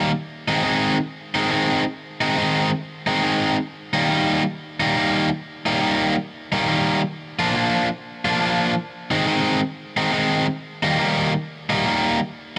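Swinging at 139 BPM in 4/4, this soulful, gritty blues in Eb major features a lone cranked stack guitar soloing up front for 12.2 seconds, its bright, overdriven picked tone colored by digital delay and set in a moderate club ambience over a progression moving through Ab, Eb, Bb and back, in what is cut from a longer piece.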